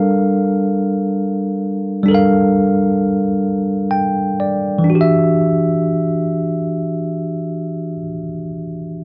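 A light reverb gives this short R&B fragment a soft sense of space, with a clean tine electric piano sitting up front and heard through its built-in speakers. The mood is late-night and yearning, carried in 6/8 with a straight feel. The electric piano is the only part, playing accompaniment across its whole length from E3 up to G5 and resting on a Gm9 chord while the pulse gradually slows through the opening. From 3.4 s it plays a fill that leads into a new section at 4.9 s, where the harmony moves to Em9. The piece is cut from a longer work, and the piano stops at 9.0 s.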